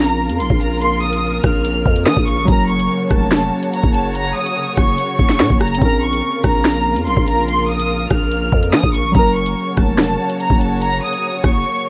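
A half-time drill groove at 144 BPM drives this ominous, cold hip hop excerpt in Bb harmonic minor, with an electronic drum kit of knocking kick, sharp snare, rim click and tape-toned hi-hats entering at 0.3 s up front, under a growling, buzzy, saturated 808-style bass. A rich, bowed violin section carries the vibrato-laden melody high above with analog delay, while warbling, lo-fi synth keys with detuned square and sawtooth tones and chorus add nostalgic accompaniment, and a muted, veiled con sordino string section holds lush, dark sustained chords. The harmony cycles between Bbmadd9 and Gb in light reverb, and the bass drops out for a break at 11.6 s.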